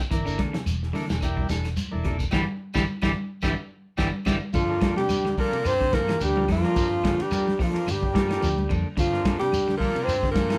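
A live band in one room, caught with moderate studio reverb, opens this driving, hypnotic afrobeat cut from a longer piece, moving at 108 BPM in 4/4 with a lightly swung sixteenth feel in G dorian, tuned slightly low. From the start a soul drum kit with a punchy kick, medium-tuned snare and dark cymbals sets the groove alongside a round, amped fingered electric bass. Grainy shekere, thick-skinned congas and very quiet woody claves fill in the percussion. A twangy, slightly broken-up electric guitar picks arpeggios, while a clean, dark guitar adds background stabs and a buzzy vintage combo organ with light vibrato holds the Gm69 harmony. The band hits an accent at 2.3 s, and at 4.5 s the harmony shifts to Gm9 as a clear alto saxophone takes the melody up front. A brilliant, forceful trombone and a raspy, gritty baritone saxophone play a second line beneath it.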